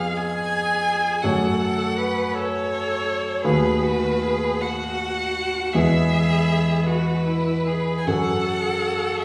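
This is a slow, romantic classical movement for piano trio, warm and tender in mood, cut from a longer piece and running 9.2 seconds. It moves in 12/8 at about 49-57 BPM counted in dotted quarters, with a flexible rubato feel. The violin carries the melody from the front with a singing vibrato, soft attack, expressive portamento and a warm bowed tone. Beneath it the cello draws a smooth, even second line with rich, close vibrato, while the polished, present grand piano supplies the accompaniment, also sitting up front. The harmony passes from C#7/E# to F#m, then through B7/D# and E before returning to F#m at 8.1 seconds, all set in the lingering bloom of a recital hall.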